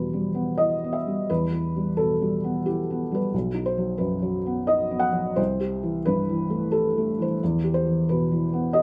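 Reflective and melancholic, this short excerpt of neoclassical minimalist piano moves in 3/4 at around 88 BPM with a rubato feel, settling in E harmonic minor. A felt-muted upright piano plays alone throughout its 8.8 seconds, its thick felt lending a soft, dark, intimate tone that sits up front in the sound. The part spans from B1 up to F#5 with a mellow character. The harmony passes from Em to B at 3.3 seconds, then to Am7/C before returning to Em at 7.4 seconds. Light reverb suggests a single room, and the whole passage feels like a brief, private moment lifted from a longer piece.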